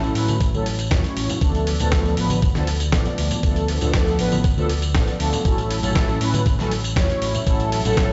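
A mellow, brassy synth brass part with chorus, phaser, delay and a cassette-tape tint opens this groovy, feel-good nu-disco clip over a round, overdriven fingered electric bass and a gritty, dusty soul sampler-style kit of hi-hat, medium-tuned snare and tambourine. Very quiet, bright hand-struck congas join at 0.3 s, and a thumpy, tape-warm electronic kick arrives at 0.4 s to anchor the straight pulse as the harmony moves from A6 to Dm6 and back. The whole cut sounds as if played on a big sound system in a bare stone room, with a dull, rolled-off top end and light reverb.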